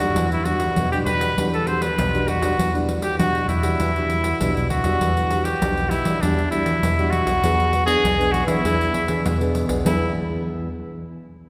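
A clear, vintage-toned trumpet sings a yearning, nostalgic jazz-style melody with vibrato, up front in a samba and choro setting, over a thumb-plucked nylon-string guitar with finger squeak, a round, punchy fingered electric bass and a jingly, close and dry pandeiro played with hard hands, with the other parts bathed in a long church reverb in this short cut from a longer piece that moves from Em9 to E7 near 7.4 seconds.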